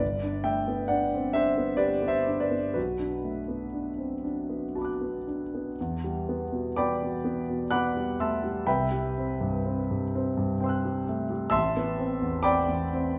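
Swaying in a rubato 3/4 at 58-68 BPM, this nocturnal, hazy fragment of impressionist solo classical piano in E minor features an intimate, up-front concert grand with deep bass and audible action noise, drifting through lush chords from Gadd9 to Em7 at 5.8 s and on to Am9 at 11.5 s inside the soft bloom of a recital hall's reverb.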